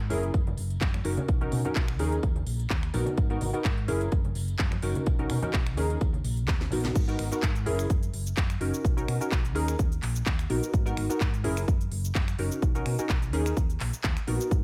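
Sensual and nostalgic, this filtered disco house piece is cut from a longer track and moves at 127 BPM in 4/4 with a light swing on the sixteenths. A punchy electronic kick sits up front, and a layered house kit adds a cracking snare, crisp hats, finger snaps, handclaps, shaker and crash cymbal in a small room, with the hats, cymbals and percussion pumping against the sidechain. A dark, round hollow-body electric bass, fingered and low-pass filtered, pumps beneath a funky polysynth comp of detuned sawtooth and square waves. The synth has a plucky, fast attack that then sustains, softened by chorus, phaser and a low-pass filter, and it cycles through F#7, Bmaj9, D#7sus4 and G#m7. Tambourine and congas played with soft hands add bright acoustic colour in the background until 6.9 seconds, and a drum fill then leads into the drop at 7.0 seconds, all set in a digital ambience.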